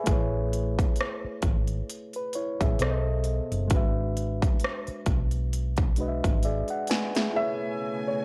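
Mellow and cosy, this lo-fi hip hop excerpt swings gently on a reedy electric piano with a cassette-tape hue, a dark, round hollow-body bass thickened by tube saturation, and a punchy, layered dance kit with crisp hats and a big-room sheen, moving through Amaj9, B7b9 and E9/G#. The electric piano and drums each take a fill before the bass stops at 6.6 seconds, and at 7.3 seconds a lush, bowed string section arrives beneath a worn, slightly detuned upright piano whose woody melody carries audible action noise. The sound is dry and gritty, with the electric piano, bass and drums placed up front.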